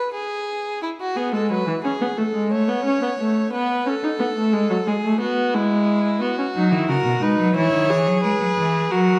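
A single bowed violin opens this short, elegant and lively cut from a baroque-style string quartet fugue, playing a smooth, even second line with vibrato that sits close and up front. A solo viola enters at 1.2 seconds with a warm, vibrato-laden accompaniment that sounds more distant yet still prominent. At 6.6 seconds a solo cello arrives on the bass line, its tone rich and focused with a smooth top. In a straight four-beat metre, the harmony moves from a rootless E through A, a B7 with its third omitted, E and B, settling back on E. A moderate scoring-stage reverb and a dark, warm production give the trio a polished, resonant setting.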